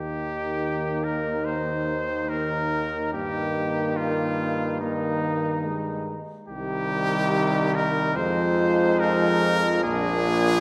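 A warm trumpet with light vibrato carries the melody up front in this triumphant, noble classical brass quintet excerpt in Eb major at 72 BPM in 4/4, joined by a distant, soft-attacked flugelhorn on the second line, a mellow French horn with vibrato and a close-miked euphonium with a gentle waver in the accompaniment, and a brilliant bass trombone on the bass, heard in a reverberant concert hall as the harmony moves from Eb through Cm and Fm7 to Bb7.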